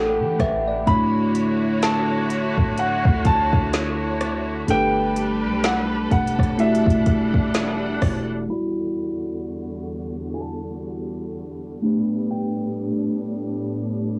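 A slow 63 BPM groove swung on the sixteenths sets a moody, late-night contemporary R&B scene in E dorian, where a soft-kicked, woody-snared electronic kit with tape coloring enters at 0.4 s beside a deep, boomy 808-style bass, while a bell-like tine electric piano with phaser opens on a fill, and a lush bowed string section pumps with sidechain under chords moving from A9sus4 through Dmaj9 and Em11; a concert grand piano carries the high melody from 0.9 s through cassette tape and analog delay, and at 8.5 s the drums and bass have dropped away as a filter sweep colors the light-reverb, low-passed home-cassette sound of this excerpt from a longer piece.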